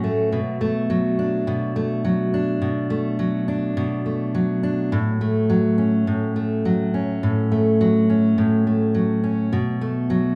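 In a straight 4/4 pulse at 104 BPM, this tender, wistful pop fragment in B minor features a solo fingerpicked steel-string dreadnought acoustic guitar, full-bodied and warm with fresh strings and placed up front, moving from Bm7 to F#m/A across its 10.4 seconds, wrapped in a moderate large-studio reverb with the live feel of a single room.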